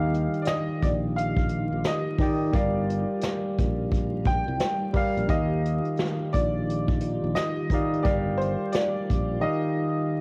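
Nostalgic and cosy, this lo-fi hip hop excerpt in Eb major at 87 BPM, with a swung 16th feel, sets a woody, slightly detuned upright piano melody over a barky, up-front tine electric piano comping Ebmaj9 and Gm7 through cassette tape, a very quiet, cloudy granular pad holding sustained chords, a warm fingered electric bass, and a brushed vintage drum kit with a punchy kick and gritty 12-bit sampler texture, all wrapped in light reverb and vinyl crackle before the drums and bass drop out at 9.4 seconds, leaving the keys and pad to land on Eb.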